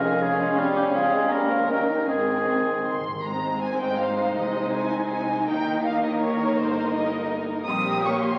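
Up front, a roomy solo bassoon carries the accompaniment beside a focused viola section while a vibrato-rich violin section sings the melody over a close second violin line, a distant oboe and a dark background clarinet, with the woodwinds dropping out near 3.0 s as timpani on medium mallets enter at 2.1 s behind smooth cellos and lush double basses in this dramatic, restless classical-period orchestral excerpt in quick triple time, heard through a reverberant recital hall and the crackle of a very old 78 rpm record.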